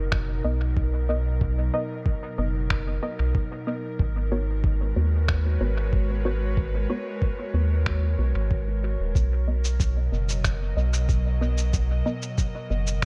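A round, deep sub bass sits up front with a touch of tube saturation, anchoring this spacious ambient dub excerpt at 93 BPM in a straight 4/4, moving from Bmaj7 to G#m11 at 4.0 seconds and back to Bmaj7 at 9.2 seconds. A muffled, thumpy, pitched-down kick with studio reverb and tape-warm finger snaps and cabasa carrying dub echo hold the groove, while an airy, breathy pad with a warbling, detuned vintage character sustains chords through chorus. Muted sawtooth chord stabs with a filter pluck and dub echo enter at 0.4 seconds, shaped by a filter sweep across the whole passage, all in a dry mix.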